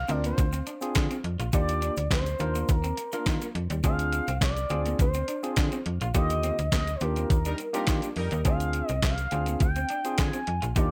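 Early-eighties boogie funk with a slick, funky mood, led by a smooth, warbling portamento synth lead with chorus over a snappy, metallic slap-like FM bass, a crisp 8-bit drum machine with a thumpy kick, fat snare, handclaps, hi-hat and gated reverb, a barky, lightly overdriven tine electric piano, a slightly broken-up picked electric guitar with lush chorus and a grainy egg shaker tucked in the background, while a bold, brassy analog synth brass line briefly joins from 7.5 to 8.4 s during a band accent.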